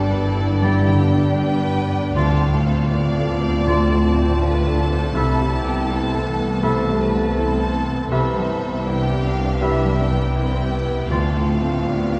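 Moving and bittersweet, this cinematic film-score passage for orchestra unfolds at a rubato 80 BPM in 4/4, in D dorian with tuning set at A4 = 435 Hz, and it is cut from a longer piece. A close, warm violin section carries the melody with smooth vibrato, while a second, more distant violin section adds a rich supporting line in the background. Beneath them, a dark viola section with expressive portamento and a clear baby grand piano with long sustain fill out the accompaniment, as a mellow French horn section holds close-miked sustained chords and a very quiet concert harp rings out thumb-plucked arpeggios. The low end rests on a lush cello section with a focused tone and a dark double bass section with soft attacks and sliding portamento. From 0.6 s to around 11.4 s, a distant, roomy oboe, a very quiet dark clarinet and a pure large flute ensemble weave second lines in the background. 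Chords move from G through Dm7, Amadd9/C and Cmaj7 before settling back on Dm7 at 11.1 s, all bathed in a church reverb that gives the dark production a cathedral-like glow.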